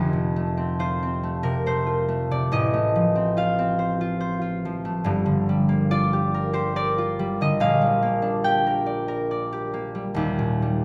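A concert harp carries this short classical solo, its fingerpicked strings ringing with a warm, acoustic tone that sits up front in the sound. The mood is peaceful and graceful, moving at 70 BPM in a 3/4 lilt that bends freely with rubato. Across its 10.8 seconds the harp spans from a deep Eb1 up to G5, tracing a gentle progression from F through F/A, Gm7 and Gm/Bb before arriving on Eb. A generous recital hall reverb with a 1.5-second decay surrounds the instrument, and the listener seems placed further back in the room. The passage is cut from a longer piece.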